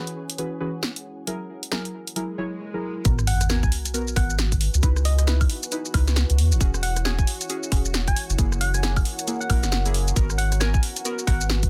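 Set in light reverb with a dense, heavily limited modern master, this soulful, late-night two-step garage excerpt opens on a silky string machine and a moody, detuned ambient pad, both sitting in the background with sidechain pumping, under warbling, vintage chord stabs carrying chorus and digital delay. A punchy, overdriven analog drum machine covers hi-hat, rim click, shaker, snare and woodblock with a swung sixteenth feel, and a swell and sub drop rises from 2.3 seconds into the drop at 3.1 seconds. A deep, up-front dub sub bass arrives just before the drop, at 3.0 seconds, and a tight, tape-warm electronic kick lands with it. Moments later a gentle, keys-like FM lead enters with vibrato, chorus, phaser and delay.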